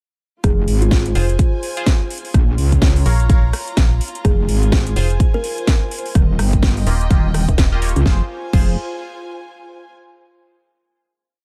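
The sound is dry and up front, with very little reverb and a dense, gritty punch. This is an aggressive bass house piece in F minor at 126 BPM, with a 60% swing on the sixteenths, and almost all of it is one drop that moves through Fm, Bbm, Fm and Ebadd9. A punchy, tape-warmed four-on-the-floor kick drives it, while a programmed house kit adds a cracking snare backbeat, metallic closed and open hats, rim clicks and crashes. Two basses share the low end. A distorted, chorused wobble bass changes its wobble speed from phrase to phrase. Entering at 1.2 seconds, a dark, digital FM bass plays chopped, decaying phrases that answer it, and both basses pump against the kick. Above them, nasal, band-passed sawtooth stabs drift through a phaser and tape echo in sparse, parallel chord shapes. A soft, woody kalimba adds short, echoing phrases in the background, and a hushed string section bowed sul tasto shifts slowly underneath, holding on alone until the final F minor chord ends at 9.9 seconds.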